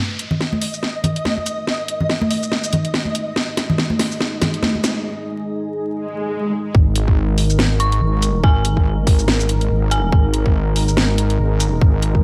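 A swung half-time groove at 142 BPM drives this heavy, cavernous deep dubstep excerpt, opening with a build-up of a garage drum kit with a cracking snare, bright hats and shaker, hard-handed congas soaked in dub echo, and a flickering, grainy texture, all over a deep, moody analog pad under a filter sweep. A short break at 5.1 seconds gives way to an electronic swell, and at 6.7 seconds the drop lands with a tight, up-front electronic kick and a saturated, wobbling sawtooth bass on G#1. From 7.8 seconds an eerie, inharmonic FM bell with chorus and dub echo floats high above, all set in light digital ambience with a bed of vinyl crackle.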